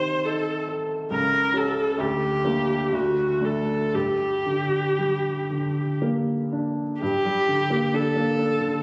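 Heard through a phone in the room and bathed in a wet scoring-stage reverb with a 1.6-second decay, this compressed recording has an intimate yet spacious quality. It is a solemn, elegiac romantic classical duo in triple metre, played with free rubato and cut from a longer piece. A single bowed viola carries the melody up front with a rich, expressive tone, shaping its lines with vibrato and portamento. A clear, natural-sounding baby grand piano sits up front alongside it as accompaniment, reaching from deep bass notes up into the viola's register, while the harmony moves through a diminished chord and a dominant seventh with a flat ninth before settling onto the minor tonic. The opening phrase returns at 7.0 seconds, and both instruments sound together until the fragment ends at 8.8 seconds.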